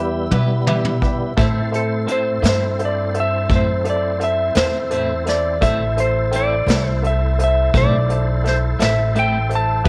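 Slow blues in a straight 12/8, brooding and mournful, heard in a short cut from a longer piece. Upright bass, played pizzicato with a woody, growly tone, sits up front beside an intimate upright piano with audible action noise, while a tonewheel organ holds full chords through a slow rotary speaker with chorus vibrato. A brushed vintage drum kit with a punchy kick and rolled-off top comes in at 0.3 seconds with a fill, as an electric guitar adds warm, picked accompaniment colored by tremolo. A dark, clean lap steel takes the melody at 1.8 seconds, fingered with a slide in its upper register. The harmony moves from E minor to A minor under light reverb and small room ambience.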